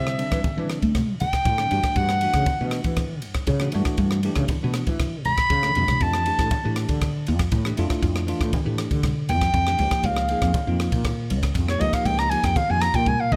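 A breathy, mellow soprano saxophone solos up front with scooped notes through plate reverb and tape echo across this bright, slick electric jazz fusion excerpt at 119 BPM, over bell-like tine electric piano, a woody, round fretless bass with lush chorus, a crisp, polished drum kit with a punchy kick and fills near 5.5 and 13.1 seconds, and thick-skinned, low-tuned congas in the background, moving from Cadd9 through Gmaj7sus2 and Fmaj9 to Dbadd9.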